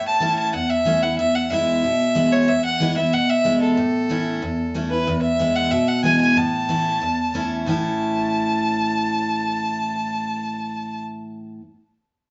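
A straight 4/4 pulse at a brisk 185 BPM drives this lively, virtuosic bluegrass fragment in A major, moving between A and E chords. A single bowed fiddle carries the melody up front, its tone rich and focused with a light vibrato and a touch of plate reverb. Beside it, a bright, full-bodied jumbo steel-string acoustic guitar picks the accompaniment, ringing on alone briefly after the fiddle stops at 11.0 seconds, all set in a wet studio room heard from further back with softened highs.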